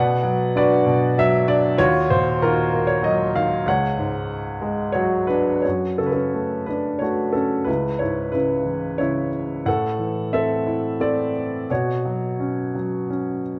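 A dark, intimate production places a clear upright piano up front in a moderate concert hall reverb, where its woody tone and long sustain ring out and the noise of its action stays audible. This short excerpt of lyrical classical solo piano moves in a triple metre with a rubato feel, giving the phrases a free, breathing quality. The mood is cool and bittersweet, the harmony drifting from Bm through D#madd9 and C#sus4 in the opening phrase. At 5.6 s a second passage begins on F#m, passing through C#m7 and Am before arriving at Bsus2 at 11.7 s. The piano spans from its low register up to the middle of the treble, sounding natural and close throughout.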